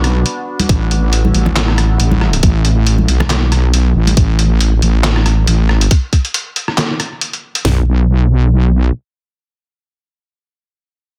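A dark, meditative deep dubstep fragment at 138 BPM with a swung half-time feel opens on the drop. A resonant, detuned drone with moving overtones holds sustained chords over Bm and A until 2.4 seconds, while a heavy, saturated wobble bass with chorus sits up front, joined from the start by a pitched-down, muffled trip hop sampler-style kit of overdriven handclaps, hi-hat, rim click and snare. A tight, layered garage kit of kick, cracking snare and toms arrives at 0.7 seconds, very quiet bright acoustic congas sit briefly underneath, and after the drums stop the bass carries on alone to 8.9 seconds in a dense, heavily limited, dry mix.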